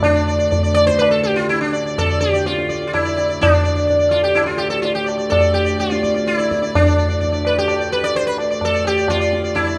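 An up-front, buzzing sitar carries the melody with shimmering sympathetic strings over a reedy, breathing harmonium drone and low-tuned, short-ringing tabla in this solemn, introspective Hindustani classical passage in raga bageshri on D, set in 7/4 at 126 BPM and speeding up across its 9.8 seconds, cut from a longer piece and heard in the moderate reverb of a scoring stage.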